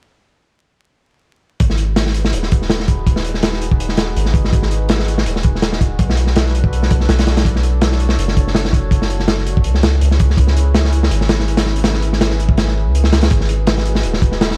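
A crunchy, gritty, saturated breakbeat kit with a tight kick and a medium-tuned snare drives this dark, nostalgic drum and bass jungle excerpt at 164 BPM in G# minor, arriving at 1.6 s together with a deep, round dub sub bass and a warbling, lo-fi tape-like pad with chorus and reverb moving through G#m7, Bm7 and C#m7, all set against vinyl crackle.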